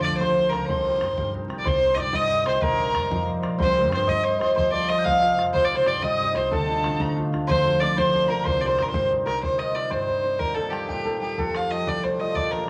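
A rich, earthy bowed fiddle leads this dark, spirited Celtic jig in 6/8, shadowed by a breathy, bright metal tin whistle with vibrato and chiff that drops out at 9.1 seconds. Around them sit a shimmering hammered cimbalom, a ringing fingerpicked concert harp, a woody pizzicato upright bass on gut strings that stops at 9.4 seconds, and a tight, damped bodhran in the background, in a mix bathed in wet studio reverb and vinyl crackle.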